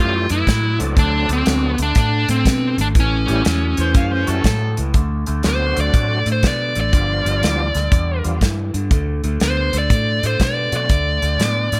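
Electric blues shuffle in D mixolydian at 121 BPM, swung in 4/4 with a rollicking, laid-back mood, taken from a longer piece. A dark, smooth lead guitar with overdrive sits up front carrying the melody, then stretches into a solo from 4.9 seconds as the chords move through D7, G7 and D. Beneath it, a thick, gritty tonewheel organ turns on a slow rotary speaker with chorus vibrato and key click until 10.9 seconds, while a second electric guitar, slightly broken-up and lo-fi through a small old amp with phaser, picks a low riff. A round, foam-muted fingered bass anchors the bottom, and a natural country drum kit enters at 0.3 seconds with a punchy kick, medium-tuned snare and hi-hat, set up front in a studio room. A brief amplified harmonica line with scooped notes and tongue slaps cuts in at 3.8 seconds, all under light reverb.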